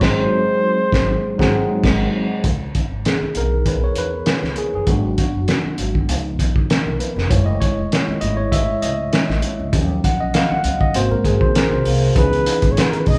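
Cinematic and silky, this lush 1970s-style soul excerpt opens with a band accent under a breathy, mellow flugelhorn with vibrato, then gives a clean tine electric piano the solo from 2.4 to 12.2 seconds before the flugelhorn returns at 12.2 seconds, all carried by woody pizzicato upright bass and a muffled, saturated cloth-damped drum kit with dark cymbals, fat snare, tight kick and vintage 12-bit sampler grit, in the moderate reverb of a large studio with the band playing live in one room.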